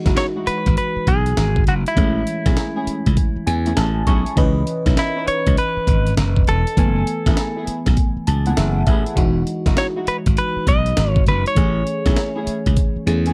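A compressed, gritty breakbeat kit with a thumpy kick and a high-tuned snare drives this slick, bouncy new jack swing R&B excerpt at 100 BPM, swung on the 16ths, with a growly, punchy slap bass up front beside it. A twangy, clean direct guitar carries the melody over chorused, bell-like FM electric piano chords moving through Emaj9, Amaj7, C#m9 and F#m11, and the keys add fills at 3.2 and 8.0 seconds. A dark, woody string section plays lush stabs through tape echo, all within a dry, close 1970s-style studio sound.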